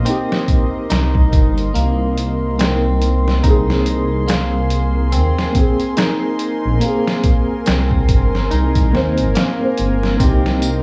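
Trip hop with a dark, hypnotic swing, cut from a longer piece, where a deep, rumbling detuned saw bass and a compressed, pitched-down sampler drum kit with a thumpy kick sit up front beneath a felt-muted upright piano carrying tremolo, 12-bit grit and tape echo, a moody chorused analog pad, and gritty, twangy clean electric guitar arpeggios, with a faint tambourine arriving at 10.2 seconds and a tense, string-like drone appearing only at 10.7 seconds, all wrapped in vinyl crackle and a small, dry room.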